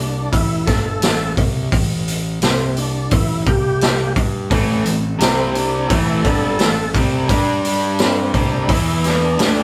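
A thick, gritty tonewheel organ with key click and slow rotary speaker opens this driving, swaggering classic rock excerpt over a punchy fuzz bass, a boomy, saturated garage drum kit joins at 0.3 seconds, and at 4.5 seconds a bright, cranked stack guitar riff with spring reverb arrives up front alongside a very quiet, full-bodied picked acoustic guitar, the whole band playing live in one moderately ambient studio room.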